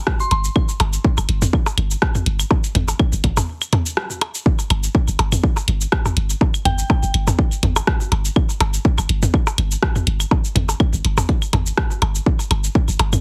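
Clinical and hypnotic, this minimal techno excerpt cut from a longer piece rides a steady 4/4 pulse with a light swing on the sixteenths. A punchy, layered electronic kick sits up front alongside a house drum kit of cabasa, hi-hat and rim click, both carrying a tape-warm character from being re-recorded in a small room. Beneath them a deep sine sub bass holds a low G with a pitch-drop attack, pumping through sidechain compression, while electronic blips, claves and toms add delayed, produced accents throughout. A soft, pure FM bell with a vintage, warbling chorus appears only in brief flickers near the start and again around 6.7 seconds, its mellow notes decaying into delay. There is a short break from 3.5 to 4.5 seconds, and the whole mix is dry and heavily compressed, giving it a dense, radio-ready sheen.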